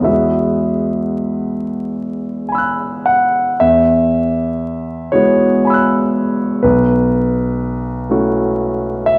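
Set in 6/8 and taken with free, rubato timing, the pulse drifts slowly at around 32-41 BPM counted in dotted quarters, giving this brief fragment of a longer impressionist solo piano piece a serene, hazy calm. A single grand piano carries everything, its tone warm, polished and present, sitting up front and ranging from deep B1 in the bass to a glinting F#6 high in the treble. The music rests in E major, opening on an Eadd9 chord at 0.1 seconds and shifting to a B11 chord at 6.6 seconds. The same opening idea is stated once and then returns at 3.6 seconds, running to the close at 9.2 seconds. A lush recital hall reverb with a long tail bathes the piano, while a layer of vinyl crackle lends the recording a dusty, nostalgic patina.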